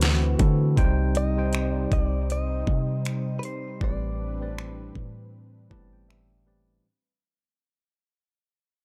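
A dark, warm production in a digital ambience frames this short, romantic and tender contemporary R&B excerpt, moving at 79 BPM in 4/4 with a swung sixteenth-note feel. Up front, an electronic drum kit sets knocking kick, deep snare, metallic hi-hats and finger snaps beside a clean, boomy 808-style bass whose sine tone hits with a fast attack and then decays. A tine electric piano, clean and heard as if through its built-in speakers, carries the accompaniment, while a smooth, detuned sawtooth pad sits in the background holding sustained chords with chorus and sidechain pumping. At 1.2 s a direct-recorded clean electric guitar enters with a picked, compressed melody colored by phaser and tape echo. The harmony passes from D13 to Cm and then Am11 as the whole passage fades out from 0.8 s, with the electric piano adding a fill at 5.3 s.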